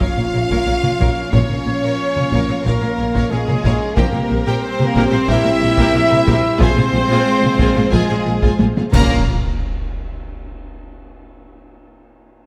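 A moderate scoring-stage reverb surrounds this dramatic, dark cut from a cinematic, epic orchestral film score, moving at 91 BPM in a straight 4/4 in B-flat dorian. A huge, bright impact opens it as heavy-stick taiko drums pound in a live room, and a mellow, vintage French horn section holds chords over cello and double bass sections that anchor the bass in the background. The melody belongs to a lush, focused violin section, shadowed by an airy, very quiet flute ensemble and a second, smooth violin section. A distant viola section adds expressive portamento, and a soft-attacked string section fills out the sustained harmony. A tight, close-miked trombone section supports the horns, while a roomy trumpet section punctuates with stabs from the back of the mix. After a drum fill, close, dry clash cymbals and concert bass drum arrive at 8.9 seconds with a second impact, the strings and flutes fall away at 9.3 seconds, and the taiko carry on to 10.2 seconds.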